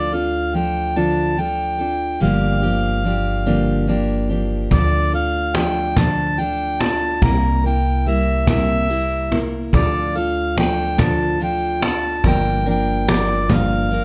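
Acoustic folk in D minor, this reflective, melancholic excerpt moves slowly at 48 BPM in a straight 6/8, cut from a longer piece. A mellow harmonica carries the melody up front with a smooth top, while a full-bodied, picked steel-string acoustic guitar supports it, its finger squeaks audible under the Dm, Gm7 and C7 changes. Pizzicato upright bass on gut strings adds a dark, thumpy low end from the start. At 4.7 seconds a soft brush drum kit joins with a punchy kick and medium-tuned snare in a small, natural-sounding room, alongside a cajon that sits distant in a large space with faint snares. Light reverb lends the whole a gentle sense of air.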